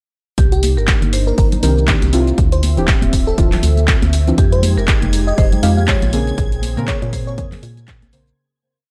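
A four-on-the-floor electronic kick and a punchy analog drum machine's claps, hats and shaker drive this dry, late-night deep house groove at 120 BPM with 57% swing. A very quiet, gritty looped breakbeat kit and background congas join them, along with a dark, hollow organ-like FM bass pumping beneath a Cm9, Dm9, Fm9, Bbm9 progression. The chords are carried by a smooth analog pad and deep syncopated chord stabs with 12-bit sampler grit and tape echo, decorated by a woody marimba motif and sparkling bell-like FM electric piano phrases. A shimmering string machine violin note enters at 4.4 seconds before the cassette-toned piece fades out from 5.7 seconds.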